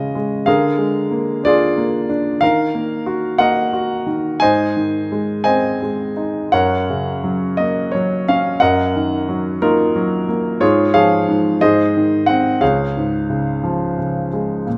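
The rhythm flows in a lilting 6/8, pulled freely with rubato so that each dotted-quarter beat stretches and settles. This is lyrical classical solo piano, dark and wistful in mood, heard as a brief passage cut from a longer piece. A single grand piano sits up front with a warm, smooth, vintage tone, ranging from Db2 up to Ab5. The harmony opens on Bb7/D and moves through Ebm, Ab and Gb, then Ebmadd9/Gb, before Db/Ab and Ab lead home to Db at 12.6 seconds. Light reverb surrounds the instrument, and the piano plays through to 14.8 seconds.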